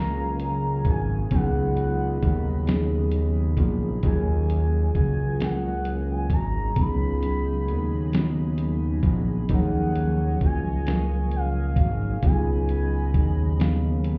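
The dusty, sampler-style drum kit sits up front with a thumpy kick, fat snare and gritty, compressed hi-hat, coming in at 0.4 seconds to carry this slow, yearning six-eight R&B excerpt. Beneath it, a fat analog bass with detuned sawtooth tone and saturated filter pluck holds the low end, while a mellow tine electric piano plays the accompaniment as though through its built-in speakers. A gliding portamento lead, smooth and soft-attacked with vibrato and chorus, sings the sultry melody high above, and a dark, slightly broken-up electric guitar adds a very quiet second line. In the background, a shimmering, retro pulse-width pad with a slow attack and long release sustains the chords, which sway between Ebm11 and Db9sus4. The whole mix sounds muffled, as if heard through a wall, with a touch of club reverb.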